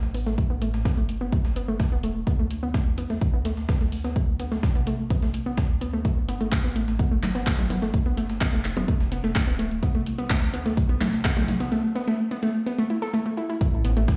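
Heard through a big sound system in a bare room and washed in a large, wet digital reverb, this dark, melancholic melodic techno build-up moves at 127 BPM in A minor, tuned to A4 = 438 Hz. A deep, rumbling detuned saw bass pumps with sidechain from the start, its beating unison sawtooth tone sitting between D1 and E2. An up-front electronic kick joins at 0.4 seconds with a layered, tape-warm thump. A soft, round pluck plays arpeggios from A3 to A4, its gentle filtered attack coloured by chorus, dub echo and sidechain pumping. A deep house kit adds congas, handclaps and metallic hats, while a gritty, pitched-up breakbeat kit of hi-hat and medium-tuned snare sits in the background, compressed, high-passed and re-recorded in a small room. The chords move from A5 through D5, G and C before returning to A5 at 13.6 seconds.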